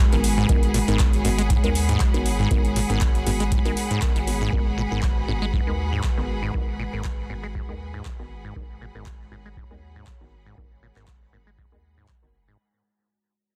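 This acid house fragment opens on a warbling, nostalgic pad holding sustained Abm7 chords, a squelchy, resonant sawtooth acid bass riff run through cassette tape and tape echo, and a lush, bowed string section spreading a smooth, vibrato-rich texture above. All three pump against the sidechain, as does the round, dark analog bass that settles in underneath within the first moments. A deep, nasal chord stab with chorus and tape echo punctuates the groove, while filter sweeps move across both the acid bass and the stab for the entire length. The booming analog drum machine adds overdriven handclaps and metallic hats, and an overdriven electronic kick thumps in from 0.5 s with a deep, roomy weight. At 119 BPM in 4/4 with a 55% swing on the sixteenths, the mood is playful and raw, set in digital ambience with a dense, heavily limited modern master, and the whole piece sits under a fade-out from start to finish.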